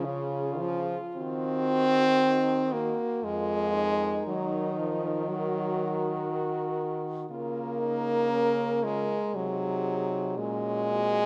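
Tender and warm, this lyrical classical passage for horn quartet, cut from a longer piece, moves at a rubato 58 BPM in 3/4, with a clear, close-miked French horn carrying the melody with light vibrato and a soft attack, a second horn singing a warm, vibrato-tinged line in the background, a third horn sitting up front with the accompaniment, and a fourth horn anchoring the bass with vibrato, all through 11.3 seconds of chords from Db through Ebm and Bbm/Db to Gb/Bb, wrapped in a moderate church reverb.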